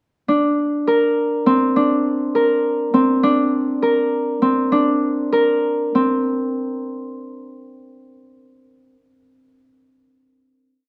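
A dark, warm production sets a solo Celtic harp up front in a moderate recital-hall reverb that lends its notes a ringing, shimmering halo. This is a brief contemporary instrumental piece in an uneven 5/8 metre with a straight feel and a playful mood. The acoustic harp, warm and fingerpicked, carries the whole piece alone, circling an ostinato that stays within a single octave from C4 to Bb4 over a Bb chord. Its opening passage begins at 0.3 seconds, and from 3.2 to 6.3 seconds the pace gradually slows, giving the figure a musing, unhurried quality. The harp's last notes end at 8.9 seconds, leaving the hall's gentle resonance behind.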